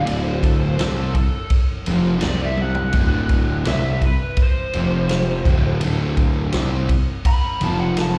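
A straight 4/4 groove at 84 BPM drives this swaggering, gritty blues rock power-trio passage with a southern rock flavour, cut from a longer piece. Up front, the vintage acoustic drum kit lays down punchy kick, a medium-tuned snare, ride cymbal and toms with a natural, rolled-off studio-room sound, adding a brief fill at 2.6 seconds. The growly fuzz bass is bright and overdriven, and the double-tracked semi-hollow guitar plays a picked, overdriven riff with a slapback echo, both sitting prominently alongside the drums as the harmony moves through D5, C5, D and F5. Over this, the lead guitar, played through a small cranked amp, takes a lo-fi, overdriven solo from the opening through 8.2 seconds, set a little lower in the mix and coloured by plate reverb, slapback echo and analog delay. The whole performance has the feel of a live gig heard through the venue's PA, with tape saturation and recital-hall reverb rounding out the sound.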